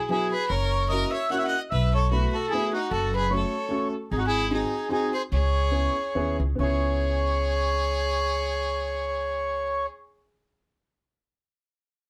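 A swung waltz lilt in three drives this nostalgic, whirling musette excerpt, cut from a longer piece, which eases into a slowdown from 4.1 to 6.6 seconds before a new section begins. A reedy, full accordion sits up front carrying the melody, while a single bowed violin adds a biting, airy second line with vibrato, and a dark, woody upright piano fills in the accompaniment. From 0.5 seconds a thumpy, gut-strung pizzicato upright bass joins up front, all captured by close, detailed microphones in light reverb.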